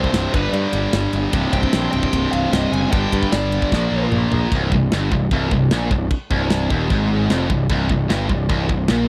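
Heavy and relentless, this heavy metal excerpt in C minor drives along at 151 BPM with a dry, close 1970s-style studio sound, as a bright, double-tracked high-gain guitar riff and a growly, punchy fuzz bass sit up front over a tight, mid-forward acoustic drum kit of kick, snare, toms, china and ride cymbals, while a bluesy overdriven lead guitar with tape echo carries a melody until 4.1 seconds, just as a drum fill from 3.7 seconds leads into a new section at 4.5 seconds.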